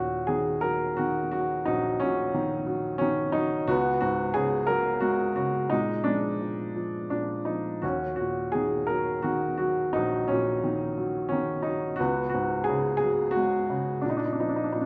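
A baby grand piano carries this brief fragment alone, its tone warm and open and placed up front, ranging from Bb1 to Bb4. The music is lyrical solo classical piano in Eb minor, cool and brooding in mood, moving in 3/4 at around 87 BPM with a freely breathing rubato. The harmony circles from Ebm7 through Db7sus4 and Bb7, returns to Ebm7 at 7.8 seconds, and passes through Db7sus4 again before settling on a bare Bb5 at 14.0 seconds. A wet recital hall reverb with a 1.5-second decay surrounds the instrument and lends it a sense of space. Lifted from a longer piece, the passage runs just under 15 seconds.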